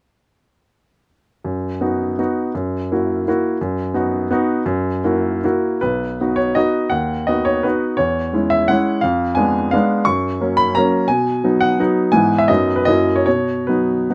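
A clear, intimate baby grand piano opens at 1.4 seconds with a rustic, graceful romantic dance in triple time and B major, its dotted rhythms set against a rubato feel as the tempo moves between 138 and 191 BPM, while close, dry miking brings the instrument up front with audible action noise across a span from B1 to C#6 in this short fragment of a longer piece that ends at 14.1 seconds.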